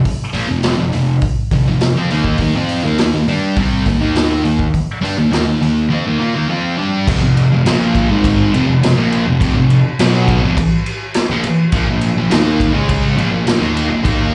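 Garage rock with a raw, rowdy mood at 103 BPM in a straight 4/4, cut from a longer piece and heard as a live gig through the venue's PA with light club reverb and a rolled-off top end. A thick, bright, double-tracked fuzz guitar riff sits up front over F5 and Eb5 power chords, moving at 7.1 seconds into a second section that reaches Bb5, while a gritty garage drum kit with a boomy kick, snare, hi-hat and crash sounds roomy and saturated. Underneath, a punchy, overdriven picked fuzz bass holds the low end in the background.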